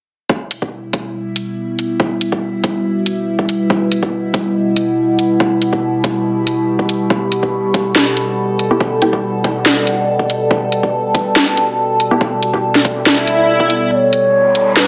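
An overtone-sweeping drone holds sustained E minor chords from 0.8 seconds, its ring-modulated sawtooth and sine tones shifting and resonant under chorus in this meditative, cavernous deep dubstep excerpt at 141 BPM in a half-time E dorian feel. Overdriven, up-front garage drums with a cracking snare and hi-hat pair with a deep, layered electronic kick that sounds re-recorded in a large room, while a muted, wave-folded dub chord stab flickers through phaser and dub echo at 8.7 and 12.1 seconds. A swell and riser build from 13.2 seconds, and a breathy, low-pass-filtered ney enters at 13.9 seconds with a soft straight tone, all set in a wet digital room reverb.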